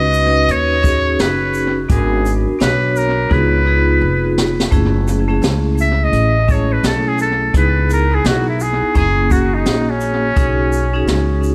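A buzzy, thin metal-muted trumpet with vibrato and scooped notes opens this cool, nocturnal, swung jazz-hop excerpt over ringing, metallic hard-mallet vibraphone with slow motor vibrato, woody pizzicato upright bass up front and a distant, roomy brush kit with a boomy kick, high-tuned snare, hi-hat and shaker, while analog delay on the trumpet, vibraphone and drums feeds an echo-heavy mix, and a drum fill at 3.3 seconds leads into a muted trumpet solo from 4.7 seconds.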